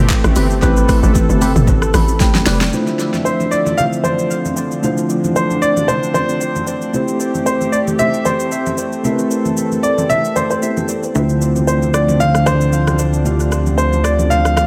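Amapiano cut from a longer piece, hypnotic and deep at 114 BPM in D minor with a 16th-note swing, moving between Am9 and Dm9 chords in an echo-heavy mix with light reverb. A mellow tine electric piano and a smooth, detuned analog pad with chorus and tremolo hold the harmony, while a deep house drum kit with punchy kick, fat snare, handclaps and shaker, ringing low-tuned congas in the background, and a dark, chorused organ stab in the opening all carry tape echo. A hollow, bouncy log drum bass drives the start until 2.7 s, a clear grand piano melody with long sustain enters up front at 3.2 s, and a funky, wave-folded analog bass plucks in at 11.2 s.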